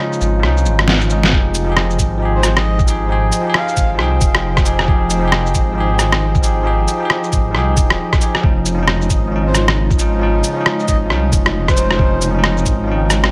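Rainy and melancholic, this future garage excerpt moves at 135 BPM with a swung 4/4 feel in F minor, opening on a short break where an up-front, muffled, pitched-down kit of electronic shaker, rim click, snare drum and cabasa plays a fill before the thumpy, tape-warm electronic kick arrives at 1.3 seconds. A bell-like tine electric piano with delay and an airy, breathy pad with chorus both pump against the sidechain over Dbadd9 and Fm9 chords, while a deep, rumbling detuned saw bass sits up front and a very quiet flickering, grainy texture shimmers beneath. A soft, flute-like synth lead with vibrato drifts in the background in two brief phrases, the second starting at 9.5 seconds, all set in light reverb and digital ambience.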